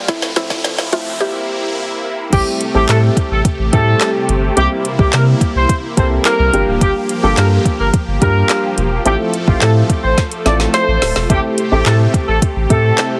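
Dance-pop at 107 BPM with a bittersweet yet confident mood, this excerpt opens with a brief build-up where a woody mallet-like synth pluck, a riser and a drum fill sit over a phaser-treated supersaw swell and concert grand piano, then drops at 2.3 seconds into a clear vintage horn section melody, round sub bass and a smooth R&B kit with woody snare and metallic hats, the horns, bass, piano and swell pumping against the kick on a heavily compressed, radio-like sound through chords moving from Am7 to C7, Gm7 and Fmaj7/A.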